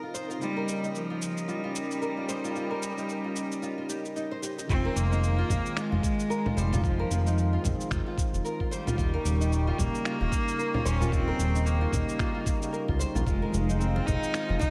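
Earthy and hypnotic, this organic downtempo excerpt in F minor at 112 BPM sets a bright, biting bowed cello melody over fingerpicked nylon-string guitar arpeggios, a clean tine electric piano, a warbling analog pad, a glassy texture that drops out at 4.7 seconds, and gritty cabasa, conga and finger-snap percussion, with a thumpy kick and smooth, up-front synth bass arriving at 4.7 seconds, ringing congas appearing at 13.5 seconds, and the whole mix soaked in lush hall reverb.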